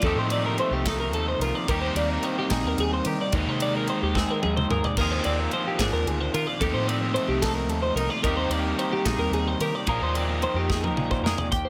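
A straight 6/8 pulse at 73 BPM (counted in dotted quarters) carries this playful, wistful stretch of math rock and midwest emo, cut from a longer piece, with a modern studio kit adding a punchy kick, medium-tuned snare, hi-hat, ride, splash, crash and toms in an airy small room, plus fills at 4.1 and 10.7 seconds. A clean, twangy fingered electric guitar comps with harmonic tremolo and plate reverb while a bright twelve-string electric guitar spins arpeggios high above through analog chorus and plate reverb, and a double-tracked, overdriven guitar grinds out a crunchy riff. Underneath, a dark, foam-muted fingered bass gives round low support as the chords move from F9 through Cm7/Eb and Ab/Eb, ending on Bb9sus4.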